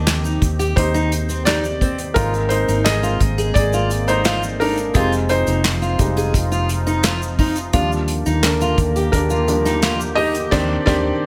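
Hopeful and warm, this piano-driven pop excerpt moves at 86 BPM in a straight 4/4 in Eb major, with a felt-muted upright piano up front taking the lead, its soft, intimate tone carrying audible action noise as it moves through Cmadd9/Eb, Abadd9, Fm7 and Ebmaj7. Beneath it, a fingerpicked steel-string acoustic guitar plays a bright riff, a dark, foam-muted electric bass gives a round, punchy low end, and an unplugged drum kit with bundle sticks, tight kick, hi-hat, snare, handclaps and crash keeps time alongside a grainy tube shaker. A detuned sawtooth pad with lush chorus warbles in the background, all set in light reverb and small room ambience, and the band lands an accent from 10.5 seconds to the close.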